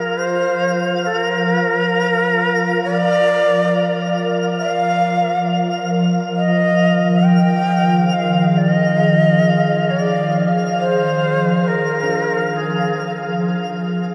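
A breathy bamboo shakuhachi with vibrato sings a serene, reflective melody in free time from the start. It floats over a mellow, airy pad thickened by ensemble chorus and a twinkling granular texture with octave-up shimmer, all held in F dorian inside a huge, wet ambient reverb. At 6.4 seconds the harmony moves from Bb/F to Fm7, and from 6.7 seconds a ringing handpan fades in with soft arpeggios in the background. The shakuhachi's tape-echoed line ends at 13.2 seconds as this piece of a longer work settles on a rootless Bbadd9/F.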